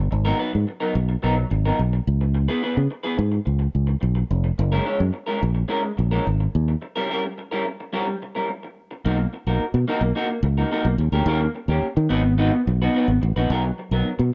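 Joyful and glamorous, this disco passage moves at 108 BPM in B major, with a punchy fingered electric bass driving the groove up front beneath a twangy, slightly broken-up picked electric guitar coloured by a lush chorus. The harmony drifts through G#m9, C#m7 and F#9 before a break from 6.8 to 9.0 seconds, then settles into a new section built on Bmaj7, D#7 and G#m7. Light digital reverb gives the dark, warm production a touch of space in this short cut from a longer piece.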